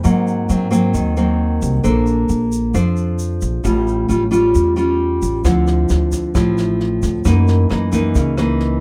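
A full-bodied, fingerpicked nylon-string guitar sits up front in this sophisticated, breezy bossa nova at 133 BPM, moving through Ab9, Bbmaj9, A7b13, Dm9 and Gb6 in a short passage cut from a longer piece. A woody, thumpy pizzicato upright bass and a grainy, bright egg shaker play alongside it from the start, all under light reverb. At 5.4 seconds a jazz kit played with brushes joins with a boomy kick, rim clicks and a high-tuned snare.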